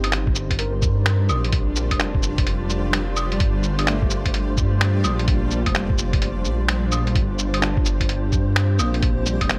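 A rainy, ghostly future garage excerpt in G minor at 128 BPM opens on a held Gm7, with a clean tine electric piano tucked in the background through dub echo, a blurred, evolving granular cloud pad and a rumbling, detuned saw bass up front, all three pumping against the sidechain. A muffled, tape-warm sampler drum kit of cabasa, claves, finger snaps and hi-hat swings its 16ths at 64%. From 0.3 seconds a thumpy, pitched-down electronic kick joins, along with a breathy, wind-like tuned noise texture drifting behind in its own reverb, the whole set in a light digital ambience.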